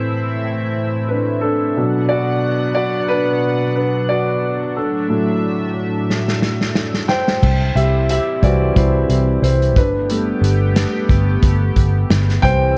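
Uplifting and warm, this piano-driven pop piece in G major moves at 90 BPM in 4/4 with a light swing on the sixteenths, led by an open, deep-bassed concert grand playing solo over a shimmering, retro pulse-width pad with a slow attack and chorus. A loose indie drum kit with a tight kick and rolled-off top enters with a fill at 6.1 seconds, and a dark, round, foam-muted picked electric bass joins at 7.4 seconds as the chords move from C to Gadd9. The recording sits in a small room with light reverb and carries the warbling pitch drift of worn cassette tape.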